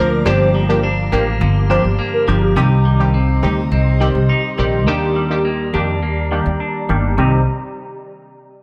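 Lightly reverberant and ambient, this hypnotic, bouncy dancehall excerpt opens with a hollow, warbling clarinet-like synth lead carrying the melody until 2.5 seconds, over punchy, detuned synth brass stabs that take on a filter sweep from 2.6 to 7.2 seconds, a glassy, ethereal FM pad holding sustained chords, twangy clean electric guitar arpeggios played through spring reverb, and a woody pizzicato upright bass sitting up front.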